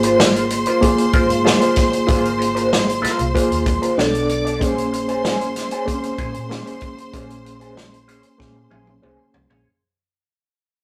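A rough rehearsal-room recording with warm saturation and a wet reverb carries this smooth, cinematic excerpt of lush 1970s-style soul, fading out across its whole length. An up-front, reedy electric piano with fast tremolo and a punchy vintage drum kit sit at the core, while a slightly broken-up, lo-fi electric guitar plays a wah riff, a dark, foam-muted bass rounds out the low end, and a clear, bowed string section carries a second line above. The harmony moves through rich ninth chords, and a drum fill arrives at 8.4 seconds.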